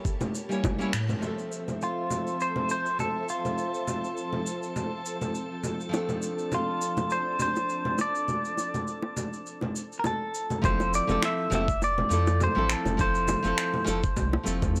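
Sunset chillout at 102 BPM in F major with a lightly swung sixteenth feel, warm and blissful, cut from a longer piece on a dry, gritty hardware recording with light digital ambience. A silky, mellow string machine holds sustained chords in the background until 10.6 s, joined by a drifting, glassy harmonics texture, while a dark, fingerpicked nylon-string guitar with analog delay accompanies and a bright, twangy clean electric guitar carries the up-front melody through its own delay. Layered shaker, congas and finger snaps run throughout, with round, low-tuned bongos appearing briefly at the start and returning from 5.9 s, and after a band accent at 0.9 s the thumpy, overdriven kick and a deep, round sine sub bass return together at 10.6 s as the chords settle back on Fmaj7.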